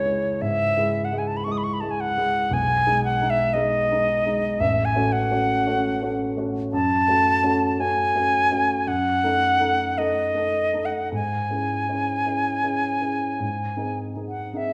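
A romantic classical duo for flute and grand piano in C# minor, this elegiac, solemn passage moves at a slow 51-59 BPM in 4/4 with a rubato feel, cut from a longer piece. The close-miked flute carries an airy, expressive melody with vibrato and a soft attack, sitting up front above the dark, mellow piano accompaniment and its deep bass. Both play throughout the 14.7 seconds in a wet recital hall, the harmony settling on G# at 13.4 seconds.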